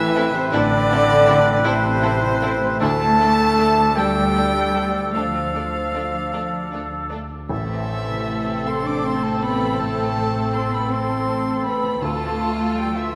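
Longing and bittersweet, this cinematic film-score passage for orchestra moves in a slow, rubato 6/8 at around 50-55 BPM in A minor, drifting between Amadd9 and D minor chords. A rich, focused solo violin carries the melody with vibrato, shadowed by a very quiet, lush violin section on the same line. An airy, mellow concert flute, a distant oboe with light vibrato and a roomy clarinet add second lines, alongside an intense, distant violin section in the background. A clear, intimate grand piano accompanies very quietly, its action noise audible, while a close viola section adds accompaniment and a concert harp rings out thumb-plucked arpeggios in the background. A dark French horn section holds smooth-topped sustained chords, and a woody cello section and double bass section give the bass a deep, bowed foundation. Everything sits in a wet scoring-stage reverb of about 2.1 seconds, and the 13.2-second passage is cut from a longer piece.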